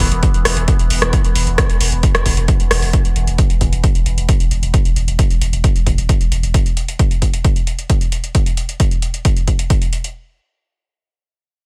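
The mix is dry and close, a short cut from a longer piece of driving peak-time techno with a dark, relentless mood in a straight 4/4 pulse. A punchy analog kick sits up front and carries the track, while a layered electronic kit adds metallic hi-hats and rim clicks, the hats pumping against the kick and the kit carrying the slight air of a small room. Underneath, a deep, thick sine sub bass holds a low E with saturation and a fast attack, filtered to keep it rounded and pumping in time until it drops out at 6.5 seconds. A resonant drone of sawtooth, sine and triangle tones shimmers at the opening, its overtones moving under ring modulation, chorus and its own reverb as it rises slowly and sustains until 3.0 seconds. From there the sub bass, kick and kit drive the groove together, and once the bass falls away the kick and kit carry on by themselves.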